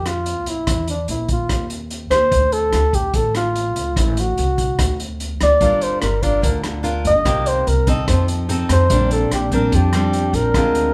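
A breathy, dark flugelhorn opens this short bossa nova excerpt in Bb major, singing a smooth, vibrato-laced jazz melody up front over pizzicato upright bass and a vintage drum kit of hi-hat, tight kick and rim click. At 146 BPM in a straight 4/4, the mood is sophisticated and relaxed. The bass sounds woody and thumpy, while the drums carry a muffled, lo-fi character with a rolled-off top, as if tucked into a small room. At 5.6 seconds a bright, full-bodied nylon-string guitar enters, fingerpicked in a classical manner with audible finger squeak, sitting up front beside the horn. The harmony moves through chords such as Dm, Am and Gm7, passes through a brief chordless moment, and settles on a Bb69, all heard as a band playing live in one room with a moderate studio reverb.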